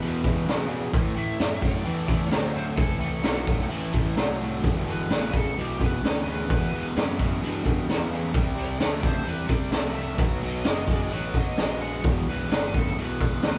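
A raw garage drum kit sits up front in this gritty, heavy excerpt of blues rock and southern rock, its high-tuned snare and boomy kick sounding saturated and mid-forward with a rolled-off top in a small room. At 130 BPM in a straight 4/4 in E minor, a sludgy, double-tracked distorted guitar pounds out a low riff alongside it, while a fuzz-soaked picked electric bass growls in the background. A biting, overdriven lead guitar enters at 1.2 seconds with a picked melody up high, and a thick tonewheel organ, very quiet and turning through a slow rotary speaker, holds sustained chords beneath. The changes move from Em to Am, back to Em, then through Cmaj7 and B7 before landing on Em again. The band plays live in one room with moderate reverb, giving the whole power-trio sound a roomy weight.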